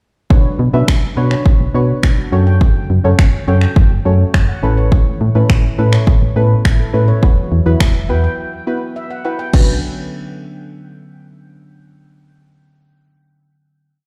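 A punchy analog drum machine drives this short, energetic and bittersweet dance-pop piece with a four-on-the-floor kick, finger snaps and crash cymbal, sitting up front beside a round, dark FM bass that plays octave lines. Underneath, a soft, warbling chord stab with detuned, vintage character and chorus plays syncopated close-voiced chords, while a ringing handpan traces rising sixteenth-note arpeggios through dub echo, both pumping under sidechain compression just like the bass. After a brief break at 8.4 seconds, the piece settles on a final chord at 9.5 seconds, all heard as if played through a big sound system in a bare stone room.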